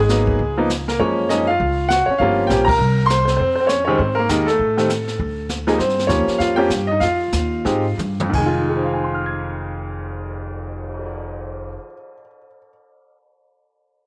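Moody and swinging, this brief cut from a longer jazz piano trio piece moves at a brisk 170-200 BPM in 4/4 with a lilting eighth-note swing, centred in F minor. The bright upright piano carries the melody up front with a brilliant, natural tone, ranging from deep in the bass register up to high sparkling notes over harmonies such as Gbmaj9, Gm7b5 and Fm7. Beneath it, the upright bass is plucked with a woody, warm sound on steel strings, while the brushed drum kit sits further back with dark cymbals, a medium-tuned snare and a punchy kick in a small, natural-sounding room. The trio hits a band accent at 2.6 seconds, the tempo slows from 5.8 seconds, and a drum fill arrives at 8.0 seconds. Light studio reverb gives the piano, bass and drums an intimate sense of space.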